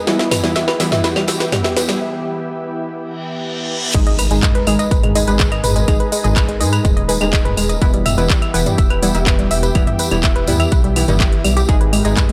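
A straight melodic techno groove drives this cinematic fragment, opening with a house drum kit fill of cracking snare, toms, claves and metallic hats, with a jingly tambourine alongside. A very quiet electronic riser builds beneath, and a short break and a reverse cymbal lead into the drop at 3.9 seconds. There a punchy, up-front electronic kick and a deep, rumbling detuned saw bass arrive together, the bass saturated and beating as it pumps against the kick, while a very quiet electronic impact marks the landing. Above, a woody, wave-folded pluck spins dark arpeggios through chorus and analog delay, and a brassy synth stab punctuates the harmony with its own delay trails. Deep in the background, a lush, thick unison pad holds sustained chords and an ethereal, airy pad adds a warbling vintage haze, both breathing with sidechain pumping. The harmony swings between E minor and G-sharp minor, and the whole has a dry, gritty hardware character with light reverb and tape-warm drums re-recorded in a small room.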